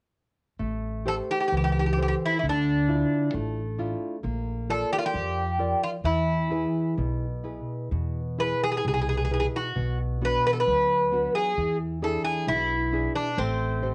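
A fado-style ballad in A minor, longing and mournful, moving at a rubato 66 BPM in 2/4, cut from a longer piece and captured as a home cassette recording with moderate studio reverb, the guitar and bouzouki both carrying cassette-tape colour. A dark, fingerpicked nylon-string guitar with audible finger squeak and a woody, growly pizzicato upright bass begin together at 0.6 s, and a metallic, double-strung Greek bouzouki, up front with some octave-doubled strings, enters at 1.1 s to carry the melody. The harmony passes from Am7 through Dmadd9, Bb, E, Bm and E7 before settling back on Am7 at 13.4 s.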